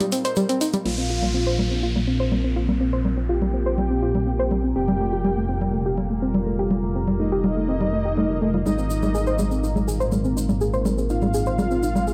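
A menacing, detuned saw bass sits up front, entering at 0.9 seconds with a saturated, evolving swell that gives this melodic techno cut its cinematic, melancholic weight. A soft, round pluck spins arpeggios throughout, colored by chorus, cassette tape and analog delay. An evolving drone hums in the background with phaser, while a punchy analog drum machine supplies congas, crash cymbal and hi-hat, and a grainy, bright tube shaker appears briefly at the start and returns at 8.7 seconds. After the opening break, a thick, bold unison lead with tape echo and a smooth supersaw second line come in, both moving under filter sweeps, and an electronic downlifter falls through the early part of the section. From 2.1 seconds a deep, full-bodied ambient pad, also filter-swept, holds sustained chords across the Bbsus2, Fadd9 and Ab changes that follow the opening Cm, giving the dry, gritty hardware recording a moody depth.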